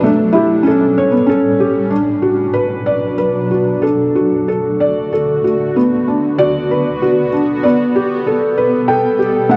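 Worn cassette tape gives this short lullaby fragment a warbly pitch drift, and a wet recital hall reverb with a 1.6-second decay surrounds it. It is children's music in D major, innocent and sleepy, moving in a rubato 3/4 at about 95 BPM. A felt-muted upright piano carries the melody up front, its tone soft, mellow and intimate, with audible action noise and a boxy character. Beneath it, a granular cloud pad holds sustained chords with a slow attack and long release, blurred and detuned, shimmering with its own reverb and tremolo while sounding bright through its cloudy haze. The harmony drifts from A7sus4 through A7 to D6, then settles on D at 3.8 seconds before moving to Bm and Gadd9/B.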